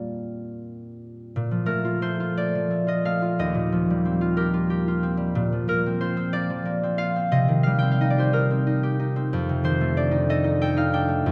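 Classical solo harp in Bb major, dreamy and peaceful, unfolding at a slow, rubato 61 beats per minute in a lilting 6/8. The concert harp is fingerpicked and up front, its warm, ringing tone spanning from low Eb2 to Bb5 and drifting through lush chords such as Bbmaj7, Eb69 and Cm7 before resting on an F13 at 9.3 seconds. A wet concert hall reverb surrounds the instrument, and this short excerpt is cut from a longer piece.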